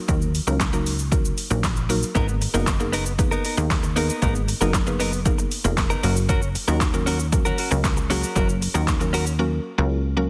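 A straight 4/4 dance-pop groove at 116 BPM in G# minor drives this energetic, confident cut from a longer piece, built on an up-front deep house drum kit with a punchy overdriven kick, fat snare, handclaps, hi-hat and shaker, a funky, evolving analog bass with sidechain pumping, and a woody, round FM mallet-like pluck shimmering with chorus, while a clean, direct-recorded electric guitar riff enters at 2.1 seconds over chords moving from D#m through G#madd9 to F#, all held in light digital ambience and a dense, heavily limited master before the drums stop at 9.4 seconds.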